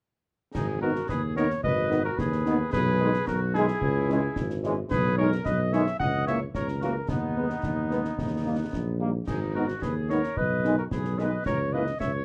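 In a straight 2/4 at 110 BPM, this stern, martial wind-band march in G# minor sets a mellow, lightly vibrato cornet melody up front over a soft-attacked, distant woodwind second line, a background French horn section, vintage-tinged trombone sustained chords, a roomy tuba bass, and close acoustic snare, clash cymbals and bass drum with dark cymbals, all in a dark, lightly reverberant production cut from a longer piece.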